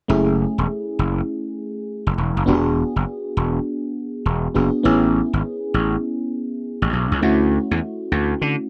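A gritty, growly slap bass sits up front with an overdriven, punchy bite, driving this short, confident and bouncy R&B fragment with a swung sixteenth-note feel. Alongside it, a mellow FM electric piano adds round, warbling, vintage chords through a chorus effect, moving from F#m7 through E7 and Amaj7 to Dmaj7. Light reverb gives the pair a little space, and the bass drops out at 8.5 seconds, just before the piano ends.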